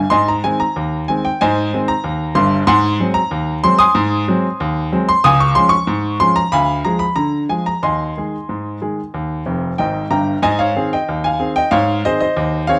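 This short cut from a longer piece has a dark, warm production bathed in wet studio reverb. A lone baby grand piano carries the whole ragtime performance, its tone clear, intimate and natural, with short sustain, audible action noise and an up-front placement. The mood is lively and jaunty, moving at 93 BPM in 2/4 with a straight feel in Ab major, and the playing spans from F1 up to Eb6. The harmony travels from Ab through Ab7, Db and a diminished chord before settling on Ab/Eb and Eb. A piano fill at 9.5 seconds leads into a new section at 10.4 seconds that returns to Ab and runs until the cut at 12.8 seconds.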